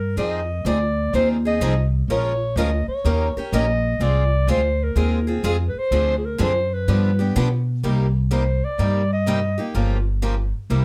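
A swung eighth-note lilt in four drives this short clip of acoustic string swing in the gypsy-jazz manner, with a swinging, virtuosic mood. A woody, thumpy upright bass on gut strings sits up front from the start, plucked and dark, while two picked acoustic guitars supply the accompaniment: a bright, parlour-sized steel-string with fresh strings, and a boxy swing-style guitar set further back, where the odd finger squeak can be heard. Over them a mellow clarinet carries the melody in jazz style, its soft attack, vibrato, scooped notes and smooth top framed by a plate reverb. The harmony moves through changes such as Fm7, Bbm7, Eb7 and Ab6 before turning toward Cm7 as a new section begins at 7.8 s, where the clarinet takes a solo turn. The clarinet falls away at 9.7 s, leaving the bass and guitars to carry the music into the cut, all set in a light reverb.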